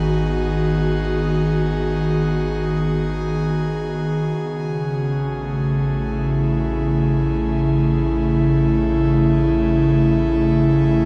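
Peaceful and warm, this ambient passage drifts in free time, cut from a longer piece. An airy, breathy pad holds sustained chords up front, its soft, detuned sawtooth and triangle tones laced with a noise layer and thickened by chorus, giving it a bright shimmer over a slow attack and long release. Beneath it, a deep, round sine sub bass sustains low notes with a quick onset, sitting well behind the pad in the mix. The harmony moves only once, from G#m7 to Amaj7 at 4.4 seconds, and both parts carry through the full 11.1 seconds. A dark production and a concert-hall reverb with a 2.2-second tail wrap the sound in a spacious, enveloping wash.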